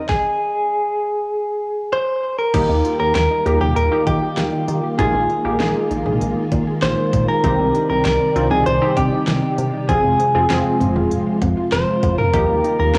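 A straight 4/4 pulse at 98 BPM drives this bright, nostalgic synth-pop passage in Eb major, cut from a longer piece. The pop drum kit has an electronic, layered sound with a knocking kick, fat snare and crisp hats, plus cowbell, crash and toms, all carrying a cassette tape colour. From the top, a clean, direct-recorded electric guitar carries the melody, picked and compressed, up front with tape echo, over a silky vintage string machine holding slow-attack chords with ensemble chorus. The opening holds on a stop until 2.5 seconds, when the chords begin moving through Ebadd9, Bb7sus4, Cmadd9 and Fm. At that point a glossy, nasal chorused synth bass, a punchy, detuned polysynth comp with ring modulation, and a very quiet, round pluck playing arpeggios all join. Moderate spring reverb and small-room ambience give the whole a homemade cassette feel.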